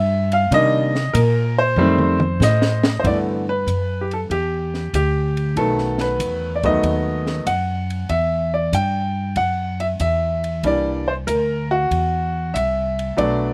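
Dry, with barely any reverb, this excerpt from a longer jazz piano trio piece swings in a sophisticated, playful mood as a brilliant baby grand with audible action noise and long sustain carries the melody up front over a woody, growly pizzicato upright bass, while a dark, smooth cocktail drum kit with a high-tuned snare and punchy kick plays a fill from 1.8 to 3.0 seconds, where a new section begins.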